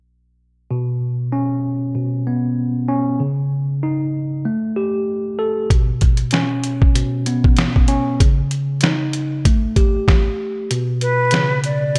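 A swung 96 BPM boom-bap groove in 4/4 arrives at 5.7 seconds on a compressed, pitched-down, muffled sampler-style drum kit with a thumpy kick and medium-tuned snare, and the kick falls silent from 10.7 seconds. Beneath it, a worn, slightly out-of-tune tine electric piano carries suspended chords from the opening through a filtered cassette-tape haze. This gritty, moody hip-hop fragment then brings in a breathy silver concert flute at 11.0 seconds, its crisp attack and unsteady vibrato floating over a closing Bmadd9 chord in a lightly reverberant room touched by faint mains hum.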